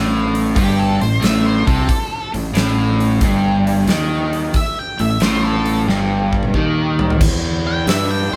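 Recorded by a band playing live in one room with light reverb, this raunchy, gritty fragment of swung blues rock and southern rock sets an up-front, double-tracked, overdriven semi-hollow guitar riff over growly fuzz bass and a huge arena kit with a pumping room, fat snare and bright cymbals, while a distorted octave-fuzz lead guitar with digital delay sings above; the drums launch a fill at 5.9 seconds, and the riff stops at 7.2 seconds as the lead takes a short solo to the end.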